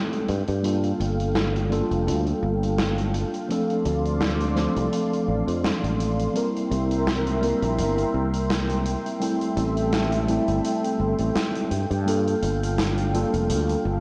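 A mellow tine electric piano and a lush, detuned unison pad with chorus and phaser open this hazy, woozy vaporwave piece in G dorian at 84 BPM, the piano carrying analog chorus and delay while a filter sweep moves through the pad. A big rock drum kit enters at 0.1 seconds on hi-hat and snare, its sound dulled by low-pass filtering, 12-bit sampler grit and gated reverb, and a growly, up-front fretless electric bass follows at 0.3 seconds. The chords drift from Gm9 through Dm7, C7 and Am7 before returning to Gm9, all set in a moderate scoring-stage reverb in this piece cut from a longer work.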